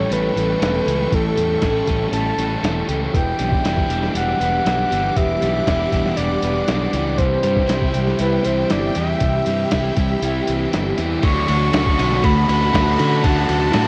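A straight 4/4 pulse at 119 BPM from a muffled, pitched-down sampler-style drum kit with a thumpy kick drives this dreamy, wistful shoegaze and dream pop fragment in D major. A growly, punchy fuzz bass sits up front beneath a breathy, flute-like synth lead with vibrato and tape echo, while vintage string-machine violas hold sustained chords. In the background play a dark, thick fuzz guitar riff and a crunchy overdriven guitar riff with reverse reverb, along with very quiet lo-fi arpeggios from a guitar through a small old amp until 11.2 s. At that point a bright, double-tracked overdriven guitar riff enters as the harmony moves from A7, Em7 and Cmaj7 to Dmaj7, the whole home cassette recording carrying a light reverb.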